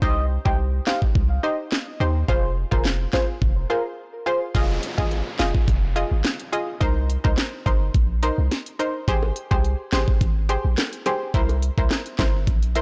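A straight 4/4 dancehall groove at 106 BPM in C minor drives this bouncy, tough excerpt, with an up-front electronic island pop kit of knocking kick, sharp snare, handclaps and crisp hi-hats over a deep, boomy 808-style bass. A round, gentle FM synth lead with a keys-like tone, vibrato, chorus and tape echo carries the melody until 4.4 s, while a bright, detuned sawtooth pluck with chorus and a short decay supplies the accompaniment throughout. An electronic downlifter enters at 4.6 s, and tight, high-tuned bongos join in the background at 9.2 s, all in a dry, blown-out, overdriven recording.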